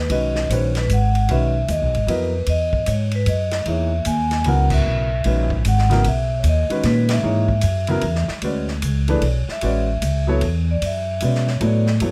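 Searching and open, this modal jazz piece in three swings as a ringing, metallic vibraphone with medium mallets and motor off carries the melody over woody pizzicato upright bass sitting up front, an intimate grand piano with audible action noise and deep bass, and a big-band drum kit with a punchy kick in a natural studio room, with the band hitting accents at 4.7 and 7.0 seconds before the vibraphone takes a solo from 8.4 seconds as the harmony shifts, captured with close, detailed microphones and little reverb in a section cut from a longer piece.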